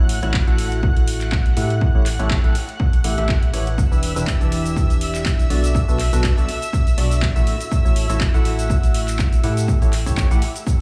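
This excerpt of bittersweet, soulful piano house at 122 BPM opens on three parts at once: a silky, detuned analog string pad holding sustained chords high in its range, a hollow percussive organ stab riff with ring-modulated bite and a diffuse ambient delay, and a dark, organ-like FM bass, all three breathing with sidechain pumping. A punchy analog drum machine brings in handclaps, hi-hat and shaker at 0.1 seconds, and an up-front electronic kick lands at 0.3 seconds, both tape-warm from being re-recorded in a small room. The groove sits in 4/4 with a gentle swing on the 16ths. The harmony moves from F#m7 over A to Em7 and Bm7, then returns to F#m7 over A at 7.5 seconds. The string pad shimmers with ensemble chorus and vibrato, the organ stab carries a subtle chorus, and a light studio reverb ties the mix together.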